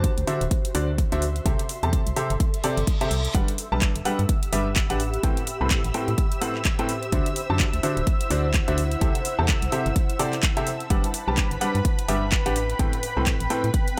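A clear, worn grand piano riff sits up front over a hollow, organ-like FM bass, a punchy electronic kick, metallic hi-hats and handclaps, and an ethereal, airy pad in this uplifting, euphoric piano house excerpt, with a gentle swing on the sixteenths and sidechain pumping on the piano, bass and pad, while a brief electronic reverse cymbal at 2.6 seconds ushers in a silky, bright analog string pad at 3.6 seconds over rich sixth, seventh and ninth chords.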